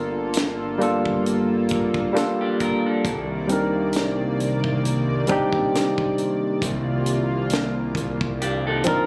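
Captured on a phone in the room with only a touch of club reverb, this short, sultry late-night neo-soul R&B fragment in C dorian sways at 67 BPM with a swung sixteenth feel. It is built around an up-front, barky electric piano with light overdrive over a shimmering, chorused pulse-width pad, a fat, saturated analog bass with a plucky filter, and a tight acoustic funk kit with a high-tuned snare. A dark, slightly broken-up picked electric guitar through a small old amp enters at 2.4 s with tape echo as the chords move from Gm9 to Cm9 and Cm11.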